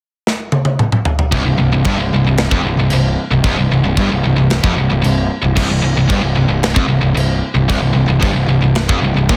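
A tight, up-front metal drum kit with a soft-clipped kick opens this dark, relentless heavy metal excerpt with a fill, then at 1.3 seconds a growly fuzz bass, a bright high-gain guitar and a background overdriven guitar crash in on a C5 riff at 113 BPM, all packed into a dense, heavily limited small-room mix.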